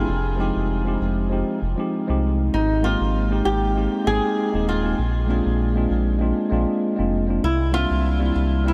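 A lightly swung sixteenth-note groove in 4/4 carries this blissful, sunny slice of sunset chillout, cut from a longer piece and running 8.7 seconds. A round analog bass sits deep and dark at the bottom, up front in the mix, its evolving tone blending sawtooth, sine and triangle shades with a fast attack and sustained notes. A clean tine electric piano, placed up front with a touch of delay and a sound like it's coming through built-in speakers, supplies the accompaniment across the harmony of Fm7, Abmaj7, Bb9 and C7. Alongside it, a boxy acoustic flamenco guitar carries the fingerpicked melody in a narrow upper-middle register, audible finger squeak included, dressed in lush chorus and delay. All three parts play together from 0.0 seconds to the end, and a huge ambient reverb soaks the whole mix in a dreamy wash.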